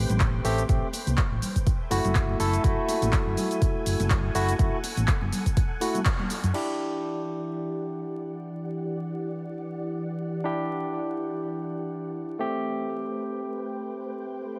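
Swung 16ths at 123 BPM drive this smooth, moody deep house cut in E minor, where an up-front deep electronic kick and tape-warm analog drum machine hi-hat, shaker, handclaps and crash join bright, high-tuned congas set back in a large room, a dark, round hollow-body bass with tube saturation, barky tine electric piano stabs through a combo amp with digital delay, and silky chorused string-machine chords moving from Am7 through F#m7 to Em7, with sidechain pumping on the bass, piano and strings, until a band accent at 6.1 s, after which drums, congas and bass fall away by 6.7 s and the piano and strings carry on over vinyl crackle and light reverb.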